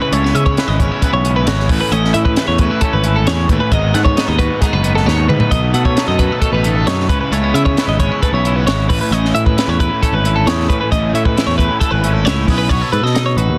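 A bright, clean twelve-string electric guitar rings out arpeggios through tape echo, sitting up front in this playful math rock and midwest emo excerpt, while a second twelve-string in the background picks warm accompaniment and a double-tracked, crunchy overdriven guitar carries a riff until 12.7 seconds. Underneath, a picked electric bass sits up front with a direct-and-amped tone, and a compact cocktail drum kit in a small room sounds dark and smooth, with a high-tuned snare, a punchy kick and a short fill at 5.1 seconds. The chords move from C#m7 through Amaj9, G#m7 and B7, return to C#m7 and Amaj9, and land on B9, with light reverb and a dense, heavily limited modern master.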